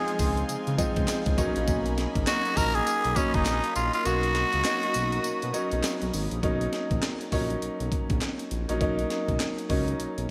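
New jack swing R&B at 101 BPM, bouncy and upbeat with a swung groove, cut from a longer piece and built on Dbmaj7 moving to Cbmaj9. A raspy, edgy tenor saxophone carries the pop-style melody with vibrato and digital delay until 5.8 s, over an intimate grand piano with audible action noise, a swirling, detuned analog pad with phaser and chorus in the background, a smooth, mellow synth bass, and a compressed, gritty sampler-style breakbeat kit with a thumpy kick, high-tuned snare, handclaps, hi-hat and tambourine. The kick drops out from 4.1 to 6.4 s, and the bright 1980s-style digital production sits in a lush hall reverb.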